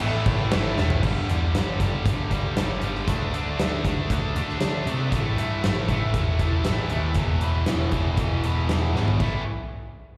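A straight four-beat pulse drives this aggressive, heavy hard rock cut from a longer piece. A bright, high-gain guitar riff sits up front, double-tracked, over a dark, round, overdriven picked bass, while a huge acoustic arena kit with a punchy kick, medium-tuned snare, crash, hi-hat and toms plays fills at 0.8 and 8.9 seconds. The sound carries like a live gig heard through a venue's PA, with light reverb, small-room ambience and a recital hall's tail.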